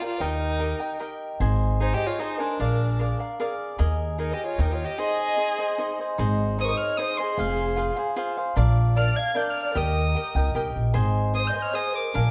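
A rich, nasal solo violin carries the melody up front, its focused, vibrato-laden bowing reaching high with a smooth top, in this proud, romantic mariachi-style Mexican folk piece in 3/4. Beneath it, a dark, woody studio violin section bows a second line in a narrower middle range, adding its own vibrato to the blend. A crisp, picked cavaquinho supplies the accompaniment close to the listener, while a pizzicato upright bass with steel strings enters at 0.2 seconds and anchors the low end as the loudest part. The harmony moves through major chords with a dominant seventh and a brief suspended turn, and a minor chord colours the second of two matching sections, which begins at 6.2 seconds. The moderate reverb of a recital hall and a dark, warm production give this short cut from a longer piece a rounded, intimate glow.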